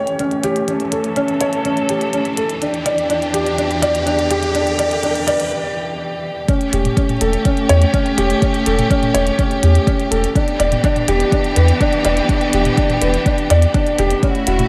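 This intimate, moving excerpt of piano-and-strings electronica at 124 BPM in E dorian opens on a felt-muted upright piano riff, soft and dark with audible action noise and short sustain, set up front and trailed by digital delay. Beneath it, a distant chamber string section holds bowed, expressive chords with vibrato, pumping under sidechain and passing through a filter sweep during the build-up. An overdriven click kit of clicky hi-hats and toms ticks along, while a background riser runs through the build-up until a brief break at 5.5 seconds. At the drop at 6.5 seconds, a deep, layered electronic kick lands up front and a round, warm sine sub bass follows, also pumping under sidechain. The harmony alternates between A7/E and Em7, and a moderate concert hall reverb gives the whole piece an intimate yet spacious glow.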